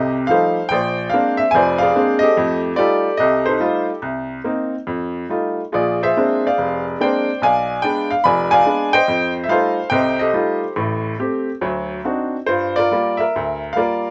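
A bright, woody upright piano plays solo jazz in F major at 144 BPM in 4/4, with a swinging, rubato feel, its audible action noise and long sustain sitting up front in light reverb as it moves through F9, Bb9, Cm7, Bdim7, Am7, D7b9 and Gm7 across this 14.1-second fragment of a longer piece.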